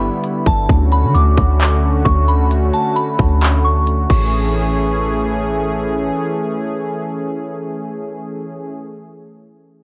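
A deep, round 808-style bass sits up front through this blissful, floating cloud-rap excerpt in A major, moving at 132 BPM with a half-time feel over chords of G6, Dmaj7 and Amaj7. A smooth, detuned sawtooth pad holds sustained chords with chorus and cassette tape coloring, while a crystalline FM synth bell carries the melody through chorus, a low-pass filter, cassette tape and tape echo until 5.7 seconds. A trap kit with a hard-clipped kick, crisp hi-hats, handclaps and a crash cymbal plays from 0.2 to 4.2 seconds, all set in light digital ambience with the hazy character of a home cassette recording.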